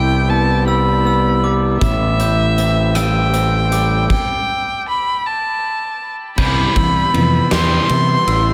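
Post-rock in a slow, straight 6/8 at 53 BPM, this melancholic, cinematic piece opens on Cmaj7 with a richly bowed, biting solo violin melody with vibrato and tape echo, over slightly broken-up, lo-fi electric guitar arpeggios with spring reverb, dark bell-like glockenspiel arpeggios in the background, and an overdriven fuzz bass sitting up front. A huge, natural-sounding acoustic drum kit with a fat snare and punchy kick joins at 1.8 s as the harmony moves to Am7. After a stop at 4.1 s, the music builds from 6.4 s back on Cmaj7, where a double-tracked distorted guitar riff and a very quiet, woody string section holding lush sul tasto chords enter.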